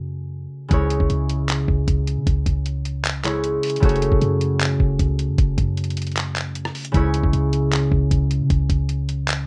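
A ringing, fingerpicked concert harp and a deep, boomy sine 808 bass open this dark, melancholic trap fragment in C# minor at 154 BPM in a half-time feel, circling between F#m and C#m, before a muffled, pitched-down sampler-style kit with a thumpy kick, handclaps, hi-hat and rim click enters at 0.7 seconds, all in a rough home-demo mix with moderate studio ambience.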